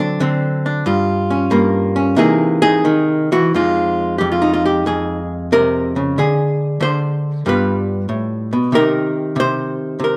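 A loose swing at 92 BPM in 4/4 gives this solo jazz piece its pulse, with the time stretched and pulled in a rubato feel. It's a short passage of about ten seconds, cut from a longer piece, in F minor with a swinging, late-night mood. A single archtop guitar, miked and amplified, carries everything alone, ranging from F2 up to C5 with a clean, picked, hollow-body electric tone set up front. The opening phrase runs from 0.0 to 3.5 seconds over D7, Gm7b5 and C7alt, then settles onto Fm7 at 3.5 seconds before moving through Ab, G7 and Cm7. Light reverb surrounds the guitar, and the production leans dark and warm.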